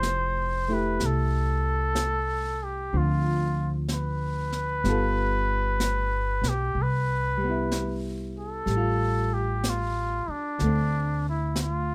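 Swinging gently at 62 BPM in 4/4, this tender, romantic jazz ballad excerpt features a veiled, breathy cup-muted trumpet singing the melody with light vibrato over clean, dark chords from a fingered hollow-body electric guitar, woody pizzicato upright bass up front and a brushed kit with a high-tuned snare and hi-hat, all in a moderate club reverb as the harmony moves from Fmaj9 through Dm7, G9 and Cmaj7 to D5 at 10.6 seconds.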